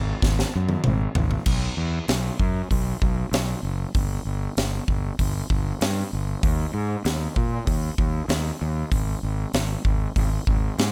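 A fuzzed, overdriven electric bass growls up front from the first moment, its bright, amped tone carrying this cathartic, anthemic stretch of quiet-loud alternative rock at 97 BPM in B major. A big acoustic rock kit joins at 0.2 seconds with a drum fill that runs to 1.5 seconds, then continues with punchy kick, high-tuned snare, toms, hi-hat and crash, its cymbals bright. The mix is dry and close, with both parts sitting forward, cut from a longer piece.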